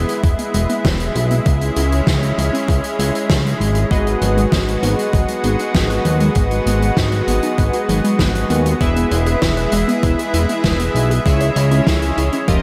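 Drenched in a big, arena-scaled reverb, this cinematic, nocturnal synthwave excerpt moves at 98 BPM in a straight 4/4, centered on G# minor. A lush, bright unison pad holds sustained chords under sidechain pumping. Beside it, a warbly, dusty pluck spins lo-fi arpeggios in the background, colored by chorus, tape echo and a filter sweep. A fat, saw-and-fold analog bass sits up front, also pumping against the sidechain. A thumpy, overdriven electronic kick lands at 0.2 seconds, while a loose, distant indie kit adds hi-hat and a fat snare. From 3.9 seconds a glossy, retro polysynth punches in with mellow, chorused stabs trailed by tape echo, all over a cycle of E, C#m and G#m7.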